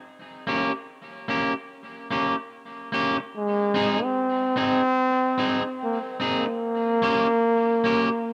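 A clear, vibrato-tinged pop-style trombone carries the solo melody from 3.4 seconds in this hypnotic, heavy reggae excerpt with a swung sixteenth-note feel, over a twangy, slightly broken-up picked electric guitar that accompanies through a low-pass filter and tape echo from 0.5 seconds, both up front in a wet spring reverb as the harmony moves from Bbm6 to Ab and back.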